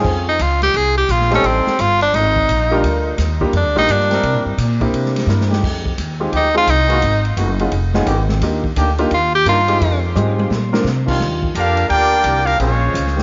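Energetic and swinging, this big band jazz excerpt in Eb major at 172 BPM opens with a punchy, forceful tenor saxophone solo carrying tape echo over clear grand piano, distant, roomy trombone chords, a woody pizzicato upright bass and an acoustic drum kit with a punchy kick and fills at 5.3 and 10.2 seconds, before an up-front trumpet section with light vibrato takes the melody at 11.6 seconds against a tight trombone second line, all in a small room with light reverb.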